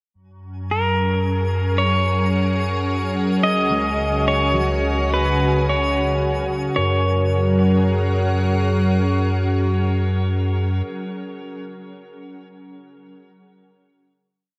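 A slow, straight waltz-time pulse carries this short, peaceful ambient piece, where a bright, pure organ-like pad with ensemble chorus holds slowly shifting chords over a round, deep sub bass sustaining the root. An electric pedal steel guitar, clean and compressed, plays arch-shaped motif phrases up front with fingerpicks, slide, volume swells and delay. Further back, an overtone-sweeping sawtooth drone and a sparkling, twinkling granular high note both fade in until 6.8 s, a thumb-plucked concert harp enters at 3.7 s with one slow, ringing arpeggio loop, and the whole piece sits in a wet cathedral reverb until the final chord settles in at 6.8 s.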